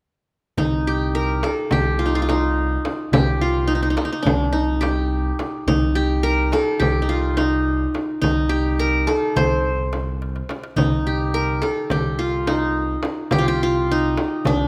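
Lightly reverberant, this melancholic, hypnotic excerpt of a Turkish makam ensemble in C makam huseyni moves at 212 BPM in eighths in a straight 9/8, with a bright, plectrum-plucked qanun carrying the melody up front on its triple strings, a smooth sawtooth-and-triangle synth bass gliding through portamento and vibrato on a sustained C2 with a moving notch, a very quiet, crisp metal-shell darbuka sitting close and dry, and a small frame drum heard in a small room, all playing together from 0.6 s, with a drum fill at 10.2 s.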